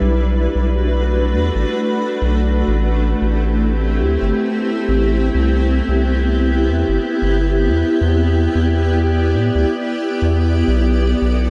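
IDM with an intricate, eerie mood, cut from a longer piece and set in a swung 4/4 feel, with a granular cloud pad holding blurred, evolving chords that carry built-in reverb and a gritty vintage 12-bit sampler character. A deep, round analog bass with a fast attack sits up front beside it, both parts sounding together from start to finish as the harmony drifts from Bm7 through Am7, Cmaj7 and Em7 before returning to Bm7. The whole mix is soaked in a huge, dreamy ambient reverb.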